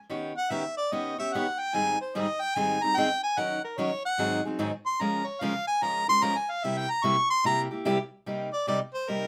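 A warm harmonica takes the lead in this fiery, bittersweet jazz fragment, soloing up front with light vibrato, scooped notes, tongue slaps and a smooth top from 0.4 seconds. Beneath it, a bright picked steel-string acoustic guitar with fresh strings and finger squeak carries the accompaniment through swung eighths. A moderate studio ambience frames the pair as the harmony moves from an augmented opening chord toward a minor seventh that arrives at 8.3 seconds, shortly before the fragment closes at 9.3 seconds.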